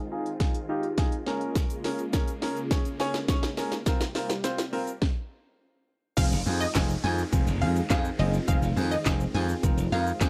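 A straight 4/4 dance-pop pulse at 104 BPM in F minor carries this confident, bittersweet clip, where huge phased supersaw chords in the background and a clear baby grand piano pump under a filter sweep and a punchy, layered house kit with cracking snare and crisp hats through a build-up over Fm7, Bbm7 and C7sus4 and a stop, until at 6.2 seconds the drop returns to Fm7 and brings in a glassy slap bass up front, a lush, wave-folded unison pluck melody with tape echo, and a downlifter, all in a dry, close 1970s-style studio sound.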